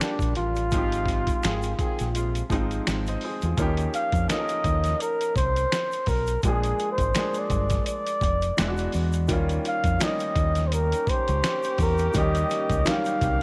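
A light reverb and small-room ambience frame this late-night, soulful R&B and neo-soul cut at 84 BPM in 4/4, with a lightly swung sixteenth-note feel. A breathy, whispered flugelhorn carries the jazz-style melody up front with mellow vibrato, over a clear, polished baby grand piano and a round, dark fingered electric bass that enters at 0.2 seconds. A gritty, pitched-down boom bap kit with thumpy kick and tape-warm snap drives the groove beside background egg shaker and handclaps, while a punchy horn section adds stabs at the opening and again from 10.7 seconds over chords moving from Gm7 through Eb9, Bb7 and E9.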